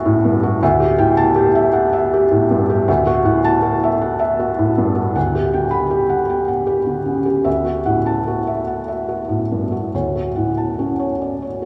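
In a rubato 6/8 lilt of roughly 46-53 dotted-quarter beats per minute, this short fragment of neoclassical minimalist piano unfolds in D major with an intimate, hopeful mood. A felt-muted upright piano plays alone from D2 to B5, its soft, mellow tone sitting up front while a wet cathedral reverb lets each note hang in a vast, echoing space. The harmony drifts from Dadd9 to Gmaj7/D at 5.2 seconds, back to Dadd9, and settles on Dmaj7 at 9.9 seconds.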